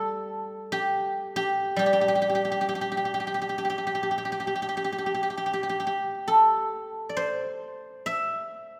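Chinese traditional solo plucked-string music, serene and pastoral in a free, rubato 4/4, this brief excerpt features a lone guzheng played up front with fingerpicks, its silvery, ringing acoustic tone spanning G3 to E5 and blooming into a wet concert-hall reverb of about 2.3 seconds, with a new section arriving at 7.2 seconds before the cut at 8.8 seconds.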